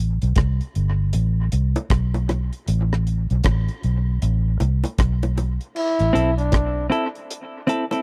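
A round, foam-muted vintage electric bass opens this deep, meditative dub reggae excerpt at 78 BPM in A minor, joined by a dark, smooth reggae drum kit with tight kick, crash cymbal, hi-hat and rim click, then low-tuned bongos with dub echo from 1.8 seconds, a punchy trombone solo with light vibrato and dub echo at 5.8 seconds, and a clean, compressed picked electric guitar with dub echo from 6.1 seconds, captured in a close, dry 1970s-style small-room studio sound.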